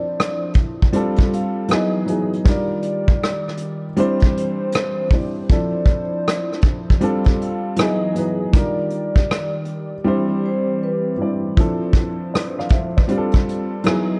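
A mellow, woody upright piano with audible action noise and a cassette-tape tint anchors this dreamy, cosy lo-fi hip hop excerpt at 79 BPM with a swung 16th feel in C major. Sounding together with it from the start are a metallic, ringing vibraphone melody with slow motor vibrato and analog delay that stops at 11.2 seconds, a hollow, flute-like pad with chorus in the background, and an up-front brushed drum kit with a tight kick, hi-hat and rim click that drops out between 10.1 and 11.6 seconds, all set in a dark, warm production with light reverb.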